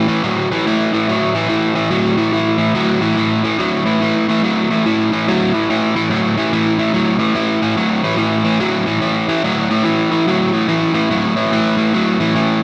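A swung eighth-note rock feel at 144 BPM in 4/4 drives this gritty, swaggering fragment, cut from a longer piece. A lone overdriven electric guitar carries it from 0.0 to 12.6 seconds, dark, picked and double-tracked, sitting compressed and up front in its low register around an A5 chord, with tape echo trailing its notes. A lush hall reverb opens the sound into a big arena space.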